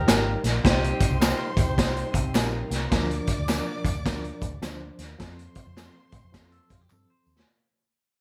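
This danceable 1960s-style soul excerpt opens at once with a distant, roomy horn section, a close, bowed violin section with expressive vibrato, and a dark, round hollow-body bass. A reedy electric piano with fast tremolo, overdriven through a combo amp, joins alongside an up-front garage drum kit that is gritty and saturated, with a boomy kick and a rolled-off top. Group handclaps, tambourine and egg shaker sit close and dry in the background, and the uptempo groove swings at 105 BPM in 4/4 with a warm mood as the chords move from Eb to Cm, then Bb/D and F. The horns drop out at 2.7 seconds, leaving the violins to carry the second line. A bright, twangy clean guitar riff appears faintly at 6.5 seconds, and a drum fill closes the fragment as the passage fades out under light reverb.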